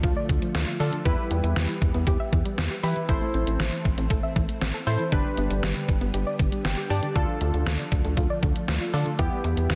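A dense, heavily limited modern master with light reverb and a faint mains hum frames this short synth-pop excerpt, upbeat and nostalgic at 118 BPM in a straight 4/4 feel, set in G mixolydian. Up front, a detuned 8-bit digital drum machine with a thumpy kick, medium-tuned snare and hi-hat carries the beat, joined by a rubbery, hollow square-wave bass that sits dark and bouncy underneath. A soft, round pluck plays arpeggios in the background through chorus and tape echo, while a vintage organ-string ensemble holds mellow sustained chords, colored by phaser and ensemble chorus. Analog keys, detuned and chorused with a filter sweep, enter at 0.8 seconds as accompaniment and add a fill from 6.4 to 7.2 seconds. The harmony moves through Dm, Em, Am and G before returning to Dm and Em.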